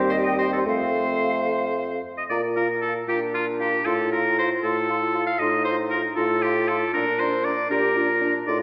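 A 6/8 at 78 dotted-quarter beats per minute, played straight, drives this quick, graceful and spirited classical-period movement for wind quintet in B-flat major, cut from a longer piece. An airy, tongued concert flute carries the melody with vibrato, sitting distant and in the background. Meanwhile, a clear oboe with light vibrato and a vintage tone sings a second line up front from 0.1 seconds. Beneath them, a roomy, dark clarinet and a warm French horn with light vibrato fill in the accompaniment, while a bassoon with vibrato anchors the bass close to the listener. The harmony moves from C minor over E-flat to F, then settles into B-flat as a new section begins at 2.3 seconds, passing through F over A before returning home to B-flat. The ensemble is heard from further back in a wet scoring stage, its two-second reverb giving the elegant lines a spacious glow.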